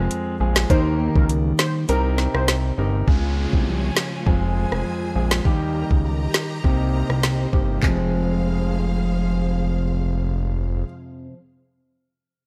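Hypnotic and tough, this dancehall excerpt in F minor at 101 BPM rides an up-front electronic drum kit with knocking kick, woody snare, metallic hats, rim clicks and handclaps, a fat, saturated detuned-sawtooth bass, dark fingerpicked nylon-string guitar arpeggios with finger squeak, and an intimate grand piano with audible action noise, while a velvety synth lead with chorus and slapback echo sings briefly near the start, the kick drops out from 1.9 to 3.1 seconds, and lush bowed strings with sidechain pumping arrive at 3.1 seconds beside a background downlifter, all in light reverb.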